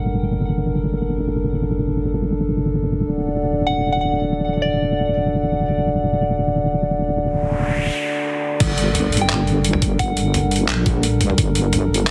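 Half-time drum and bass at 173 BPM in G harmonic minor, heavy and spacious, this short cut opens on a dark, nasal analog pad pumping with sidechain over a deep, wobbling sawtooth bass, the harmony moving from Gm to D, while a soft, warbling FM bell drifts through tape echo at 3.7 and again at 9.2 seconds. A noise sweep rises from 7.4 seconds into an impact at 8.6, where the drop lands with a knocking, overdriven electronic kick and a gritty, pitched-down sampler-style kit of crash, handclaps, hi-hat and toms back on Gm. The mix sits in light reverb with a heavily compressed, radio-like sheen.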